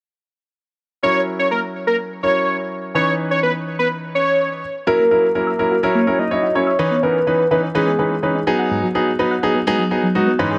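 Driving and confident, this pop excerpt opens with a thick, bright detuned unison lead carrying the melody over an intimate grand piano whose action noise sits audibly up front. At 4.9 seconds the lead hands off to a round, dark octave-layered synth line with chorus, phaser and vibrato, while a tight, wave-folded sequenced synth adds plucky arpeggios in the background through to 10.6 seconds. The chords move through F#7, C#m9/E and G#m7 in a light reverb.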